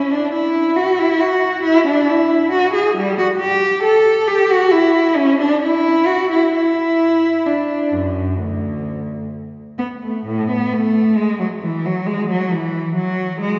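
Flowing and dance-like, this short cut from a longer baroque-style suite movement for unaccompanied cello moves with a supple rubato in four. A single bowed cello carries the whole line from D2 up to A4, its tone warm and expressive with vibrato and portamento, set up front yet sounding distant. A wet concert hall reverb with a 2.3-second decay places the listener further back in the room, and the sound is rounded off with nothing above 7.6 kHz, the opening material returning at 10.3 seconds.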